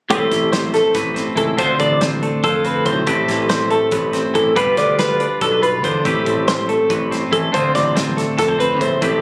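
From the first moment, an intricate, wistful math rock and midwest emo passage in 7/8 brings in a warm, clean twelve-string electric guitar playing the chords Am9, Dm7 and G7, while a second, twangy twelve-string sits up front tracing high arpeggios through phaser and digital delay, a growly, bright picked electric bass holds the low end, and an airy, polished studio drum kit with a tight kick, medium-tuned snare and hi-hat plays quietly behind, the whole fragment captured on a phone in a club-like room with light reverb and compression.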